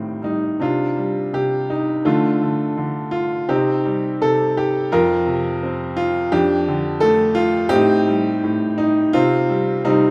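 A clear, woody upright piano sits up front with a boxy tone, playing alone in a moody, bittersweet classical piece in C dorian at around 84 BPM with a lyrical, rubato feel, spanning F2 to Bb4 through chords such as Am7b5, Dm, Cm and Fsus4, bathed in the wet reverb of a recital hall in this 10.1-second fragment cut from a longer work.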